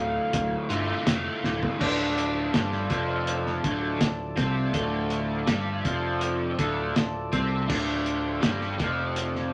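A straight 4/4 pulse at 82 BPM in D minor carries this dark, trippy psychedelic rock excerpt, where a reedy, breathing hand-pumped harmonium holds sustained chords over a bright, double-tracked overdriven electric guitar riff fed through a rotary speaker, a round, overdriven picked electric bass, and a muffled, cloth-damped thuddy drum kit with a fat snare that enters at 0.3 s and plays a fill at 1.4 s before the second section begins at 1.8 s, set in a moderate studio reverb.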